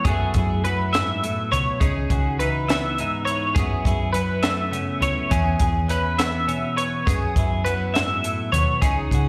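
Math rock and midwest emo in a bright, playful 6/8 at 68 BPM, this short live excerpt heard through a venue's PA in a reverberant hall sets two clean, twangy, compressed twelve-string electric guitars, one picking accompaniment up front and one spinning high arpeggios through analog chorus and slapback echo, over a dry, up-front cocktail drum kit with a high-tuned snare and punchy kick and a dark, round hollow-body short-scale bass, all cycling through F#m11, C#m9 and E6.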